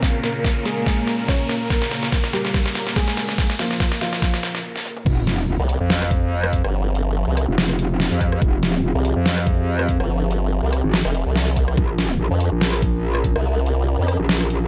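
Set in a light digital ambience, this heavy, menacing wobble dubstep excerpt at 143 BPM in F harmonic minor opens on a build-up over Bbm, where a dark, boxy grand piano melody with delay and audible action noise sounds alongside an ethereal, phased airy pad, a lush supersaw pad under a sweeping low-pass filter, a background riser and sub drop, and overdriven drum fills with a deep snare and bright hats. After a brief stop, the drop lands at 5.1 seconds on Fmadd9 with an impact as a metallic, aggressive FM wobble bass takes over, joined at 5.6 seconds by a detuned formant-sweep wobble bass. Both are overdriven with chorus and placed up front, alongside the knocking overdriven kick and the half-time kit. The supersaw pad keeps pumping in the background as the harmony returns to Bbm at 11.8 seconds.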